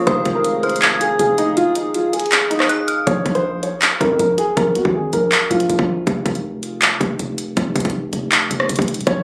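Captured on a phone in a club-like room with light reverb, this menacing, eerie trap cut runs at 160 BPM in a half-time 4/4 feel in Bb minor, with a boxy, dark baby grand carrying the melody up front through a low-pass filter and tape echo, its key action audible. An inharmonic, detuned FM synth bell with chorus, tremolo and echo, a soft felt-muted upright in the background and a warbling, lo-fi pad with chorus all fall away around 3 seconds, while a punchy, heavy 808 bass and an electronic kit of hard-clipped kick, bright hi-hats, handclaps and rim clicks keep going. At 6.1 seconds the melody drops out for a break, leaving bass and drums until the piano briefly returns at the close of this excerpt.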